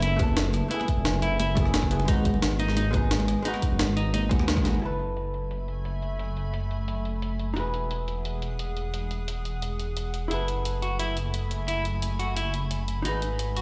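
This liquid drum and bass excerpt at 175 BPM in F# dorian opens on a drop, with a dark, compressed hollow-body jazz guitar comping through digital delay and a clean electric guitar picking scooped arpeggios soaked in lush chorus and tape echo. Underneath, a deep, rumbling detuned saw bass sits up front, saturated and beating, while a gritty, pitched-up jungle sampler-style kit of hi-hat, rim click and medium-tuned snare, low-pass filtered and re-recorded in a large room, rolls alongside a tight, layered electronic kick and very quiet, bright congas played with hard hands. After a band accent, the kick and congas have stopped by 4.8 seconds, a filter sweep begins on the drums, and a glassy, ethereal FM pad with slow attack and long release enters at 5.3 seconds. The clean guitar returns near the end as the harmony moves through F#m11, G#m7 and Emaj9. The lush, rolling mood is framed by light reverb and the sound of a big system in a bare room.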